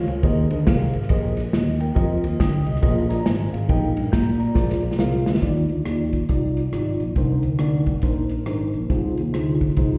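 Uplifting and reverent, this short excerpt from a longer uptempo gospel piece moves at 138 BPM in 4/4 with a swung eighth-note feel in Eb major. A mellow, clean tine electric piano carries the accompaniment across a broad span from Bb2 to G6, its sound coming through built-in speakers and sitting up front. A fingered electric bass, punchy and direct, holds the low end between Ab1 and Bb2, while a soul drum kit with dark cymbals, a medium-tuned snare and a punchy kick works through hi-hat, ride, rim clicks and snare in a small, smooth-sounding room. A drum fill from 4.6 to 5.4 seconds leads into a new section, where the harmony settles from Ebmaj9 through Cm9 to Fm7/C after earlier sus chords and Abmaj9 colours. Over the whole mix, light stone-room reverb and a muffled quality, as if heard through a wall, soften the top end.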